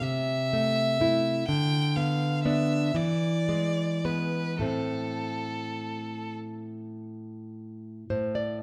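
In a 6/8 that breathes with free rubato, this short cut from a longer romantic duo for violin and classical guitar carries a melancholic, yearning mood. A single bowed violin sings the melody up front, its rich tone smooth and even with vibrato. The nylon-string guitar supplies fingerpicked accompaniment in a warm, acoustic classical voice, sitting just as close as the violin. The harmony moves from Am/C through Dm69 and E7 before settling on Am. The violin falls away at 6.4 seconds and the guitar carries on alone until 8.6 seconds, both wrapped in a moderate recital-hall reverb.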